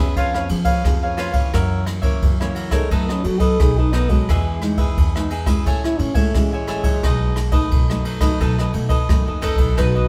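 Lively and joyful, this samba and choro excerpt features a dark, forceful trombone soloing with light vibrato over crisp, bright cavaquinho, warm fingerpicked nylon-string guitar, woody pizzicato upright bass and an airy, up-front brush drum kit with a boomy kick, with a mellow picked mandolin entering at 9.4 seconds near the close of the solo, all captured as a band playing live in one stone room with moderate reverb.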